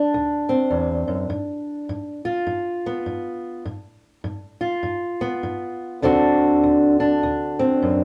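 Soulful and laid-back, this short blues fragment at 101 BPM swings gently in 4/4 as a lone fingerpicked old ladder-braced acoustic guitar, dark, woody and boxy with the dull ring of old strings, sits up front in a small room with light reverb, moving from D7 to G7 at 1.3 seconds and back to D7 at 6.0 seconds.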